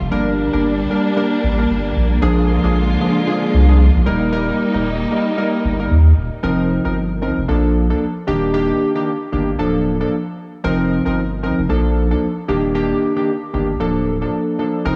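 A swung afrobeats groove at 114 BPM carries this joyful, sunny excerpt, with a deep, saturated sub bass sitting up front and round, detuned analog keys with a chorus sheen and filter sweep comping through chords that move from Gm to Bb7 and Eb. A lush bowed string section with vibrato and portamento holds sustained chords until 6.4 s, when the second section begins circling F7sus4, Bbmaj7 and Ebmaj7. The whole mix is dreamy and soaked in a lush hall reverb.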